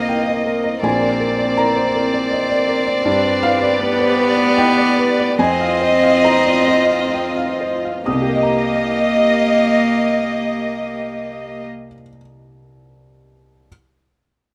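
In a rubato 3/4 that drifts between 63 and 82 BPM and slows from 2.0 to 8.1 seconds, this fragment of a neoclassical piece for piano and strings in C minor feels longing and reflective. The harmony moves from Cm7 through Bbadd9 and G to Fm7 before settling back on Cm7 as a brief second section begins at 8.1 seconds. Up front, a dark violin section carries the melody with vibrato and a soft, smooth sul tasto tone, while a single cello plays a second line that sounds nasal yet pure and floating. Behind them, a warm chamber string section holds sustained chords with light vibrato. A felt-muted upright piano gives a mellow, boxy, intimate accompaniment with audible action noise, and it plays alone once the strings stop at 11.6 seconds. Tuned to A4 = 439 Hz, the recording has the close studio ambience of a rough home demo mix.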